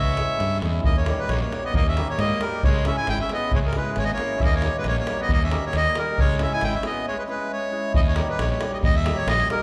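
Bathed in the lush reverb of a church-like hall, this fiery, bittersweet Balkan wedding-band excerpt at 135 BPM in 2/4 sets a reedy, close-miked accordion melody up front over a gritty fuzz-driven electric bass, deep saturated davul and shimmering, ringing hammered dulcimer, while a soft, lightly vibrato-tinged classical trumpet sits in the background through a short break from 7.1 to 7.9 seconds, dropping out as it ends, as the harmony swings between C#m and D#.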